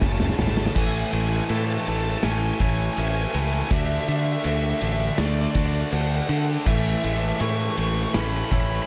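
A distorted, bluesy lead guitar with slapback echo carries a soaring, hopeful melody over this 81 BPM post-rock excerpt in A major, which opens with a drum fill before the band settles into a straight 4/4 feel on F#m7, Amaj7 and Dmaj7 chords. Beneath it, a double-tracked overdriven guitar riff and an up-front, growling fingered bass drive the low end, while a loose indie kit plays with a pumping small-room sound, dark cymbals and a tight kick. Very quiet layers fill in the texture: a clean, fingerpicked pedal steel sustains chords with slide and volume swells, a compressed, twangy guitar plays arpeggios, and a slightly broken-up guitar through a small old amp adds higher arpeggios, all set in a dark, warm production.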